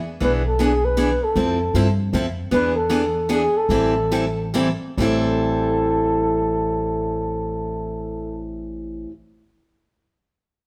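Bittersweet yet fiery, this short cut from a longer acoustic string swing piece in 3/4 features a dark, breathy flugelhorn carrying the melody up front, with light vibrato and scooped notes that give it an intimate, vintage jazz voice. A bright, boxy picked steel-string acoustic guitar and a woody, growly pizzicato upright bass accompany it, the band playing live together in a large studio with moderate reverb. The pace slows between 2.5 and 5.0 seconds, and a new section then begins.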